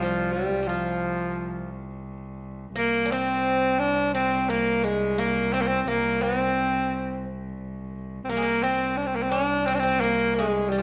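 A bright tenor saxophone carries the melody up front, played solo in a classical style with a vibrato that gives this Turkish piece its soulful, melancholic character. Behind it, an acoustic Greek bouzouki adds a picked second line in the background, its metallic double strings and some octave-doubled courses giving a glinting edge. Beneath both, a single bowed cello holds a low drone with a rich, gut-string, period-style tone that carries a reedy quality. All three parts sound together through this short excerpt of a longer piece, moving in a straight 4/4 feel. A moderate recital-hall reverb lends the ensemble a natural sense of space.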